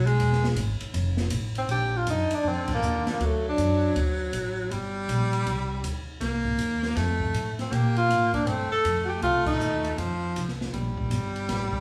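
A swinging 4/4 at 159 BPM in Bb major drives this playful small-group jazz fragment, cut from a longer piece, as a punchy, close-miked baritone saxophone opens with a forceful solo over woody pizzicato upright bass and an acoustic kit with dark cymbals, a medium-tuned snare and a boomy kick. A clear tenor saxophone with vibrato and a soft attack takes the melody up front from 1.6 seconds and again from 7.6 seconds, while the bright baritone carries a second line beneath it and the whole band hits accents together. The group plays live in one room, wrapped in moderate large-studio reverb.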